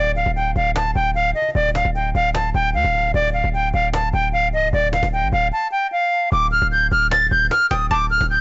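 An airy silver concert flute carries the melody from the first moment, its soft attack and vibrato sitting up front with a trail of delay, while a heavy, punchy 808-style bass booms underneath with a sine body, a noisy edge and fast, decaying hits. This is a menacing, melancholic slice of trap-flavoured hip hop at 151 BPM in a half-time 4/4 feel, rooted in D phrygian over a D minor chord. A snappy, close cajon played with soft hands joins at 0.2 seconds, its snares adding an acoustic crackle. Near the end, at 7.7 seconds, a twangy, string-like resonator pluck slips in as a second line, its sawtooth tone shaped by a filter sweep and a moving notch, then thickened by chorus and delay. The whole recording is blown-out and overdriven, with a dull, capped top end and only light reverb, giving this short fragment of a longer piece a gritty, saturated character.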